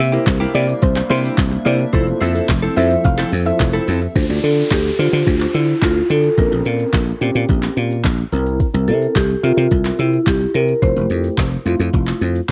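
A smooth, electronic R&B drum kit sets a straight, easy groove of soft kick, woody snare, metallic hats, shaker and handclaps, re-recorded in a small room and sitting up front, in this carefree, summery dance-pop excerpt cut from a longer piece. Beneath it, a dry thumbed slap bass sounds bright, growly and punchy, foam-muted and pumping with sidechain, while a mellow tine electric piano comps through built-in speakers for the whole passage. The opening drop pairs a soft, round, dark pluck melody with chorus, sidechain pumping and a cassette-tape tint, a picked, compressed clean guitar riff treated with analog chorus, and a very quiet, ethereal FM pad with a slow attack and built-in reverb; the pluck stops at 3.6 seconds, and the guitar and pad stop near 4.1 seconds. An electronic downlifter then sweeps in at 4.2 seconds, and at 4.4 seconds a woody rosewood marimba, played with medium mallets, takes over the melody with its own cassette coloring. 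The harmony moves through seventh chords and a minor add-nine before resolving back home, and the whole mix carries a lo-fi home-cassette character with the top end rolled off and a digital ambience around it.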